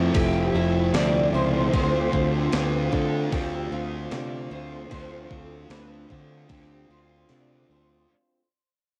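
Brooding and melancholic, this short shoegaze and dream pop fragment drifts between Fmaj7 and Dm7 as a shimmering, woody twelve-string acoustic guitar picks octave-doubled arpeggios through ensemble chorus, analog delay and cassette tape. A slightly broken-up, lo-fi electric guitar through a small old amp sits up front with its reverse-reverb riff, joined by a thick fuzz guitar riff steeped in distortion and lush chorus and a growling, overdriven fingered bass. A crisp 8-bit drum machine with a thumpy kick and medium-tuned snare carries hi-hat and tape grit until 7.5 s, while the whole home-cassette recording fades out, with a break from 7.3 s.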